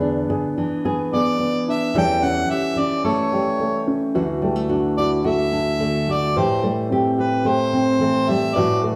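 Acoustic folk with a pastoral mood at 109 BPM in a straight 4/4: a full-bodied, fingerpicked nylon-string guitar sits up front, a dark upright piano plays woody arpeggios with long sustain, and a warm, present harmonica enters at 1.1 s with a solo second line in a classical style, moving from E7 and A7/E into D mixolydian at 4.2 s over Dadd9 and Am7, all set in a large studio reverb heard from further back in the room in this short cut from a longer piece.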